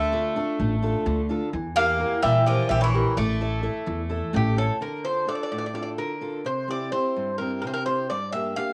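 Greek folk for a bouzouki band, driving and dramatic, moving in 7/8 at 256 BPM with a straight feel and settling into D minor from 4.8 s over chords such as Dm, Edim, C and Gm. One up-front, metallic bouzouki carries the melody throughout while a second, brighter bouzouki plays a lower line, and a fingerpicked steel-string acoustic guitar with fresh strings and audible finger squeak accompanies from start to finish. A woody, growly pizzicato upright bass drops out at 4.7 s, leaving the lead bouzouki and guitar to continue in a moderate studio reverb with the character of a home cassette recording.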